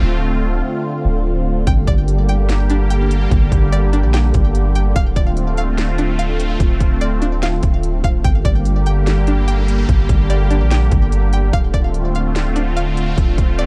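Melancholic and ethereal, this atmospheric cloud-rap excerpt in G minor moves at 146 BPM with a half-time feel. It opens on an airy, detuned sawtooth pad with chorus and sidechain pumping, sitting over a deep, mellow sine 808-style bass held up front, while the chords alternate between Dm7 and Gm. At 1.7 seconds a twangy, string-like resonator pluck with chorus and digital delay begins arpeggiating, and a trap kit joins with a hard-clipped kick, sharp snare and crisp hats, all set in a dark digital ambience.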